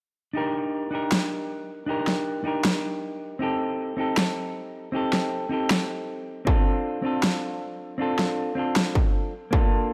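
Emotional and bittersweet, this short future bass excerpt moves at 157 BPM with a swung, half-time feel, built on a clean, hollow-body semi-hollow electric guitar that sits up front from 0.3 seconds, its chords treated with spring reverb and delay and pumping against the sidechain through Ebmaj7/D, Cm6, Dm7 and Bbmaj7. A huge, layered electronic snare with a tape-warm edge enters at 1.1 seconds, while a distorted electronic kick punches in only briefly at 6.5 and 9.0 seconds. A lush hall reverb with a digital sheen surrounds the whole mix.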